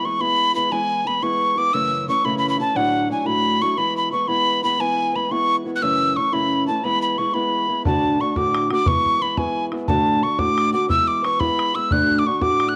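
A bright, cheerful Celtic jig in 6/8 opens with a wooden whistle carrying the melody up front, its airy tone marked by a chiff on each crisp attack, lifted highs and an expressive vibrato. Beneath it, a fingerpicked old ladder-braced acoustic guitar, also close and present, supplies a dark, boxy accompaniment with the character of old strings. The tune moves at 118 dotted-quarter beats per minute in E mixolydian, its first passage circling E, F#m7 and Dadd9 before the harmony settles into a swing between D and E. At 7.9 seconds a bodhran joins for the second passage with an open, boomy sound heard in a small room. The whole piece sits in a moderate echo-chamber reverb with a 1.9-second tail, and this short cut from a longer performance ends at 12.8 seconds.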